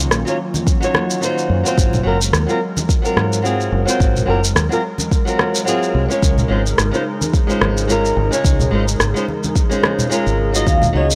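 Sunset chillout at 108 BPM in 4/4 with a gently swung sixteenth feel, relaxed and unhurried over Ebm9, Ab13 and Dbmaj7 chords, built on a deep, up-front electronic kick, a layered electronic rim click and shaker, saturated congas and a foam-muted fingered electric bass, while a dark, fingerpicked flamenco guitar with audible finger squeak, vintage 12-bit sampler grit and tape echo carries the accompaniment above a soft, breathy, detuned pad with chorus, and a mellow soft-mallet vibraphone with motor vibrato enters only at 10.7 s, the whole mix sitting in a dry, gritty hardware sound with light reverb.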